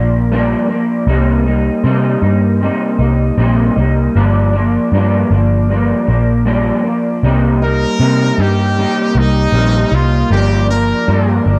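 Cassette tape character and an echo-heavy mix give this short excerpt a worn, intimate sound, with moderate spring reverb and a small-room ambience around it. The piece is wistful, mellow indie pop in C minor, moving at a relaxed 78 BPM in a straight 4/4 as the harmony drifts between Gm7 and Cm7. Up front, a fingered electric guitar through a small old amp plays the accompaniment in a dark, slightly broken-up tone, colored by analog chorus and vibrato. A vintage muted picked electric bass sits beside it, foam-muted and round, holding the low end throughout. At 7.6 seconds a brilliant trumpet enters with a punchy, forceful pop-style solo line, its vibrato carried by lush chorus and analog delay before it falls away at 11.4 seconds.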